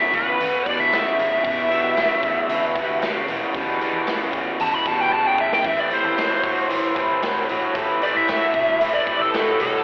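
A biting, overdriven lead guitar with wah plays a solo through this brooding, heavy excerpt of blues rock and southern rock at 114 BPM in E minor, up front beside a bright, double-tracked garage riff guitar with slapback echo. In the background, a gritty tonewheel organ holds thick sustained chords through a slow rotary speaker and chorus vibrato, while a dark, foam-muted fingered bass and a punchy vintage drum kit with a rolled-off top drive the straight 4/4 feel, with a drum fill from 5.1 to 5.7 seconds leading the harmony from Em7 to Am7. The band sounds like a live gig heard through the venue's PA, with recital hall reverb, plate reverb and a telephone-like filter.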